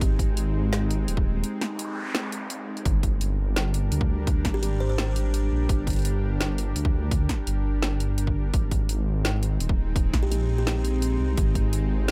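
A dark, spacious half-time drum and bass passage, cut from a longer piece, opens with a hard-clipped electronic kick and a rumbling, detuned sawtooth bass up front, an overdriven kit of woody snare and bright hats, and a tense, string-like bowed drone that pumps with sidechain and carries its own reverb over chords moving from Ab to Gm and back to Ab. A short break at 1.4 seconds brings in an electronic noise sweep, and a buzzing, thumb-plucked kalimba with analog delay surfaces in the background at 4.5 and again at 10.2 seconds. The mix sits in an echo-heavy digital ambience.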